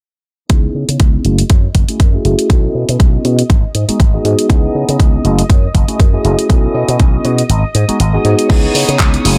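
Filtered disco house at 120 BPM in C# minor, this groovy, nostalgic cut from a longer piece rides a swung 16th-note feel over a looping progression of C#m9, F#m9, B9sus4 and G#m7. A punchy, tape-warm electronic kick sits up front, joined by a house kit of hi-hat, handclaps and crash cymbal whose hats and cymbals pump with sidechain compression, both re-recorded in a large room. A growly, bright slap bass with an envelope filter carries the low end up front, while a mellow tine electric piano colored by phaser supplies the chords and a rich, distant violin section holds smooth sustained harmonies with vibrato; all three pump against the kick and sit under a low-pass filter. A filter sweep runs across the section from 0.5 to 8.5 seconds, and the kick drops out at 7.5 seconds before the progression returns to C#m9 at 8.5. A barely audible tambourine slips in at 4.5 seconds, and the mix stays dry with little reverb.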